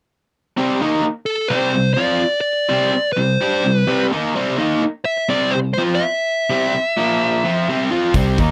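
A straight, driving 4/4 feel carries this gritty blues rock power trio and southern rock excerpt, where a bright, double-tracked, overdriven stack guitar picks an up-front riff from 0.6 seconds, a dark, smooth lead guitar with overdrive and slapback echo sings a melody over it from 1.3 seconds, and a punchy fingered electric bass and a big-room rock kit of hi-hat and kick drum only arrive at 8.1 seconds, captured in a dry, close 1970s-style studio sound.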